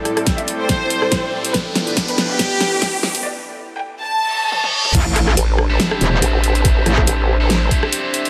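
Swung sixteenths over a half-time 4/4 pulse at 141 BPM drive this menacing, aggressive cut from a heavy wobble dubstep track in A minor, where a knocking, tape-warm electronic kick sits beneath an up-front kit of huge snare, bright hats, rim clicks, toms and crash cymbal. The opening build-up is led by a rich studio violin section playing an expressive, vibrato-laden melody with dub echo, while a lush, detuned supersaw pad holds sustained chords from Am7 to Bdim in the background, roughened by vintage 12-bit sampler grit and sidechain pumping. An airy, breathy pad with chorus breathes underneath throughout, and electronic sound effects of a riser, reverse cymbal and sub drop carry the tension through drum fills and a break at 3.2 seconds. At 4.9 seconds the drop lands on Am with an impact, and a metallic FM wobble bass, distorted and overdriven, takes over up front, soon joined by a nasal, formant-filtered vowel-sweep wobble bass on A1. 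From 5.7 seconds a double-tracked, overdriven electric guitar adds picked stabs with dub echo, all set in light reverb and digital ambience.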